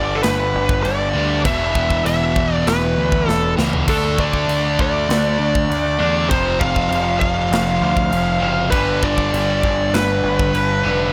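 A dark, up-front high-gain lead guitar carries the melody over two picked rhythm guitars, one sludgy with overdrive and one tight with distortion, both sitting in the background, and a growling overdriven bass in this relentless 99 BPM heavy metal fragment in straight 4/4; a polished, airy drum kit with a tight kick and bright cymbals enters at 0.2 seconds and plays a fill from 3.3 to 3.9 seconds as the chords move from G through E5, D5 and F5 back to G in a roomy studio space.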